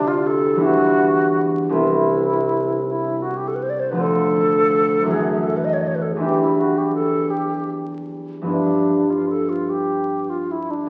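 A lilting 6/8 sways at 53 beats per minute in dotted quarters, the pulse stretching and easing with rubato through this pastoral, dreamy excerpt of an impressionist classical duo. Up front, the alto flute carries an airy, vibrato-laden melody with tongued notes and lifted highs, while the thumb-plucked concert harp rings out bright acoustic chords beneath it, drifting through colors such as Cmaj7, F#m7 and G6. Both play throughout the 10.9 seconds, set in a wet recital hall reverb and heard through the crackle of a very old 78 rpm record.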